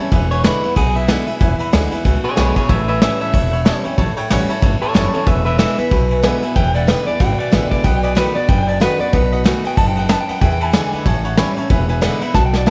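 Rockabilly with a rowdy, upbeat character, this short excerpt cut from a longer piece runs at 186 BPM in 4/4 with a swung eighth-note feel, centred in E mixolydian. An electric guitar through a small old amp carries the melody from 0.3 seconds, its tone slightly broken-up and coloured by spring reverb and tape echo. Beneath it, a bright, full-bodied dreadnought acoustic guitar and a brilliant, open upright piano fill out the accompaniment, while a woody, thumpy upright bass on gut strings anchors the low end. A vintage kit played with brushes sits up front, with a tight kick, medium-tuned snare, dark cymbals and a rolled-off top, and it closes with a fill from 12.3 seconds. The harmony moves from E7 to A7, back to E7, then to B7 before returning to E7, and the whole band plays in a small room with light reverb.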